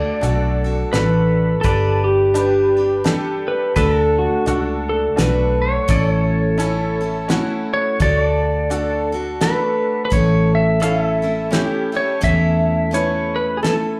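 A swung 3/4 lilt at 85 BPM in D major carries this heartfelt, sunny honky-tonk and classic country excerpt from a live club gig, where an up-front pedal steel guitar takes the solo with fingerpicked slide and volume swells, a second, twangy pedal steel holds sustained chords in the background with subtle chorus, a bright dreadnought acoustic guitar and a detuned, jangly upright piano share the accompaniment with plate reverb and slapback echo, a dark, foam-muted electric bass sits round and punchy, and a damped 70s kit adds a fat snare and tight kick, the whole band heard through the venue's PA in a moderate club room.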